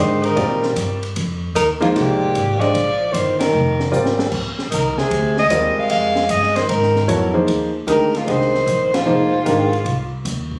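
Captured on a phone in the room with a moderate studio reverb, this short cut from a longer modal jazz piece sounds roomy, with a searching, intense mood. At a swinging 152 BPM in 4/4, a breathy soprano saxophone carries the melody up front, its whispered, soft-attacked tone and light vibrato giving it an intimate feel. Below it, a bright tenor saxophone plays a second line in a lower register, close-miked, with vibrato and scooped notes. A clear, natural grand piano sits up front with the accompaniment over suspended F and then Bb harmonies. A woody, thumpy pizzicato upright bass anchors the bottom, while an acoustic jazz kit with dark cymbals, a high-tuned snare and a boomy kick drives the swing. The band hits accents at 3.3 and 8.9 seconds, with a short drum fill around 3.9 seconds leading into the chord change.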